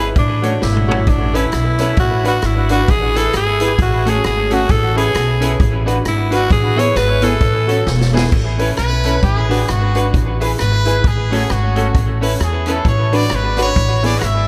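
Light reverb and a small-room ambience frame this upbeat, cheerful ska passage in A major at 132 BPM, swung on the eighths. A woody, thumpy pizzicato upright bass sits up front over a swinging big-band drum kit with a punchy kick and fills at 0.6 and 7.9 seconds, while a twangy clean electric guitar with analog chorus and tape echo and a clear upright piano playing stabs stay in the background. A raspy, growling tenor saxophone carries the melody until 7.9 seconds, then a brilliant, distant trumpet with light vibrato and tape echo takes the solo from 8.8 seconds.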